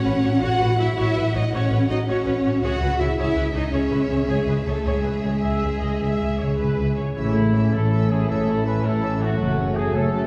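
Heard from further back in a reverberant recital hall, this excerpt of a heroic, swashbuckling adventure film score moves at 108 BPM in a determined 12/8. An expressive, vibrato-laden violin melody sits above a lush second violin line, smooth viola accompaniment and ringing harp arpeggios, while a focused cello section and up-front double basses carry the bass from the opening. At 7.2 seconds, mellow horns and a very quiet trombone section add sustained chords as a clear trumpet section punctuates with stabs, all three sounding distant and roomy.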